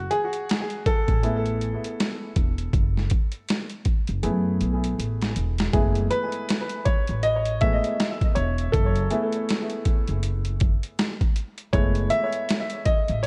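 An upright piano with a smooth, vintage tone and a short sustain opens this nocturnal, smoky jazz-hop excerpt alongside a woody pizzicato upright bass on steel strings, the piano's solo lines trailing an analog delay over an F#m11 harmony. Boom bap sampler-style drums arrive at 0.1 seconds, gritty and overdriven with a thumpy kick, a medium-tuned snare and hi-hat, all with a 12-bit sampler crunch and the sound of having been re-recorded in a small room. A drum fill from 4.2 to 5.7 seconds leads into the second section, where the piano keeps soloing at the front of an echo-heavy mix with light reverb and a 16th-note swing.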